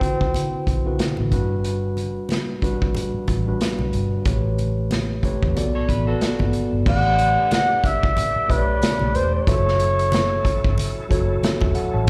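Silky and smooth, this fragment of lush 1970s-style soul, heard live through a club PA, sets a mellow flugelhorn's jazz-style melody over tine electric piano, a dark, foam-muted fingered bass, a punchy vintage drum kit with dark cymbals and low-tuned congas, while a twangy, slightly broken-up electric guitar riff slips in at 5.8 seconds before a reedy tonewheel organ with slow rotary speaker holds chords in the background from 6.9 seconds as the flugelhorn returns.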